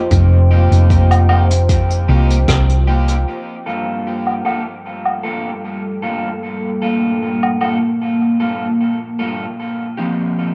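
Spacious and deep, this ambient dub excerpt in G minor at 76 BPM opens with a dark, detuned sawtooth pad sustaining chords through chorus and cassette tape, a round, up-front hollow-body bass with tube saturation that stops at 3.2 seconds, a layered electronic kick, and a distant, roomy brush kit with rim click and woodblock under dub echo, while a slightly broken-up picked electric guitar plays stabs through low-pass filtering and dub echo, a band accent lands at 2.5 seconds, and a filter sweep on the drums runs from 3.3 seconds as the harmony shifts to Gm7, all set in a small room recorded on cassette.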